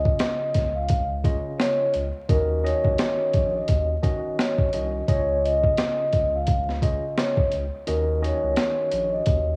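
A swung, head-nodding boom-bap groove at the core of this moody, gritty hip-hop fragment comes from a compressed, pitched-down sampler-style kit with a thumpy kick and high-tuned snare, the kick dropping out from 7.9 to 9.3 seconds, under a round, deep analog bass, a clean tine electric piano colored by cassette tape, and a mellow, ringing soft-mallet vibraphone melody trailed by tape echo, all wrapped in light reverb, vinyl crackle and the grain of a home cassette recording as the chords move between Dbadd9 and Ebm7.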